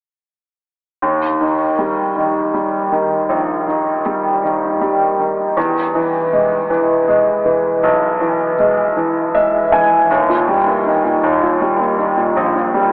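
A clear baby grand piano opens at 1.0 seconds, carrying the accompaniment in an intimate, up-front voice with audible action noise and an analog chorus. This dramatic, melancholic pop excerpt moves at a slow 53 BPM in 6/8 with a straight feel, its harmony shifting from D# to E and back to D# at 10.1 seconds. Spanning a range from A#1 to G#5, the piano adds a fill from 9.0 to 10.1 seconds before a new section begins. The mix is soaked in a huge ambient reverb with a seven-second tail, giving the sound a dreamy haze paired with a telephone-like tone. The piano plays through to 12.9 seconds, where this fragment of a longer piece is cut off.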